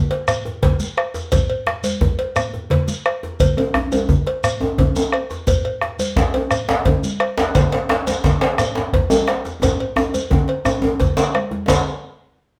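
This festive, powerful West African drum ensemble opens with a deep, dark bombo, ringing medium-tuned congas played with soft hands, a metallic, dry cowbell and a tight, cracking djembe sitting in the background with metal rattles, all moving in a straight 12/8 at 116 beats per minute. A grainy, mellow shekere joins at 0.3 seconds, sounding distant as if caught in a large room. At 3.6 seconds a second djembe arrives up front, struck with hard hands and carrying its own rattles and a warm, deep body despite its roomy, far-off placement. The groove holds steady until a drum fill takes over from 9.6 seconds, driving the passage toward its close. Moderate studio reverb gives the ensemble a sense of space, and the clip is cut from a longer piece.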